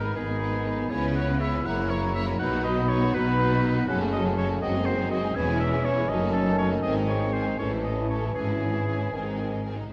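Heard from the very first moment as a full orchestra, this cheerful, graceful classical-period excerpt in 6/8 carries a rich, distant violin melody, joined by a focused second violin line, an airy, hollow flute section, a solo oboe with a warm, smooth top, a warm clarinet and a lightly vibrant bassoon, over a very quiet, close viola section, tight, roomy French horn chords, a bright cello section and a clear, up-front double bass section, all set in the wet reverb of a scoring stage.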